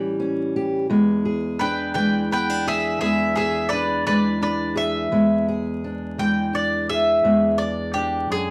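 Acoustic country blues with a gritty, laid-back mood, this short fragment of a longer piece rolls along in an unhurried 12/8 with a straight feel. A fingerpicked steel-string acoustic guitar opens alone, setting a warm accompaniment that spans low bass notes up into its middle register as the harmony moves from A7 to E7. At 1.6 seconds a mandolin enters to carry the melody in a higher range, its picked double strings sounding bright and woody. Both instruments sit up front and at an even level, as if the duo were playing together live in one room. A light reverb and a layer of vinyl crackle give the sound a worn, old-record character.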